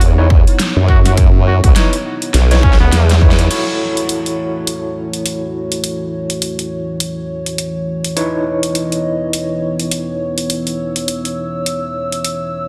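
Gritty and funky, this glitch hop excerpt rides a swung 103 BPM groove in F# dorian, opening with a mellow trumpet melody drifting in the background, a punchy, up-front electronic kick and a chorused, wobbling formant-sweep bass, all of which drop out by 3.5 seconds after a drum fill and band accent. A moody analog pad with sampler grit and sidechain pumping holds the chords throughout, while a barky, overdriven tine electric piano plays stabs with fast tremolo and tape echo, its filter sweeping from 3.5 seconds onward. The dubstep kit's huge snare and metallic hats carry on in a small room, with light reverb over a dense, heavily limited master.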